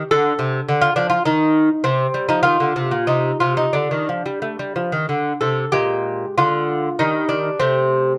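Classical, baroque-style dance in triple time, heard as a brief cut from a longer piece, with an introspective, flowing mood and a rubato feel. A solo lute carries it throughout, fingerpicked and delicate, its nylon double strings, some doubled at the octave, sounding bright and up front as it moves through harmonies such as Dm, Cm and Bb7 before settling on Am/C. The production is dark, with light reverb, and the music shifts into a new section at 5.7 seconds.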